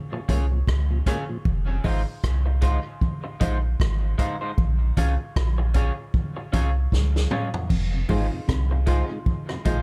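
A heavy, meditative dub reggae groove in F minor rolls along at 77 BPM in 4/4, its sixteenths carrying a gentle swing, in a short cut from a longer piece. A deep, round sine-like sub bass sits up front with a vintage acoustic drum kit whose punchy kick, medium-tuned snare, rim clicks, hi-hat, toms and crash have a rolled-off top, while damped, thick-skinned congas with dub echo sit close and dry in the background. An electric guitar through a small old amp, lo-fi and slightly broken-up, plays fingered accompaniment drenched in lush chorus and dub echo from the start, and a dark, clean tonewheel organ with chorus vibrato and slow rotary speaker murmurs behind it before dropping out at 1.8 seconds. The opening stretch is a break built on Bbm7 and Fm7 chords, closing with a drum fill that lands at 7.7 seconds, where a picked guitar riff at the edge of break-up enters low in the mix with dub echo. 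The organ then returns, and a brilliant, woody, slightly detuned upright piano adds echoing stabs in the background from 8.1 seconds, all set in a small room ambience.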